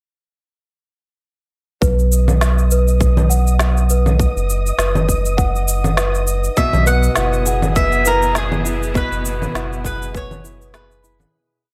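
This short, playful folktronica piece in B major opens at 1.8 s with a bell-like celesta playing a 7-step loop that drifts against the bar, a round sine sub bass with long gliding notes, and an overdriven electronic kit of tight kick, woody snare, shaker and low conga at a swung 101 BPM. A grainy, flickering high texture joins soon after. At 6.6 s the harmony moves from B to E as a picked mandolin brings an up-front, motif-based melody, a fingerpicked flamenco guitar rolls through arpeggios, and a distant string quartet holds slowly shifting chords with vibrato and a 12-bit sampler grit, while delay colours the celesta, mandolin and guitar, the drums ring in a large room, and the piece fades out from 8.2 s.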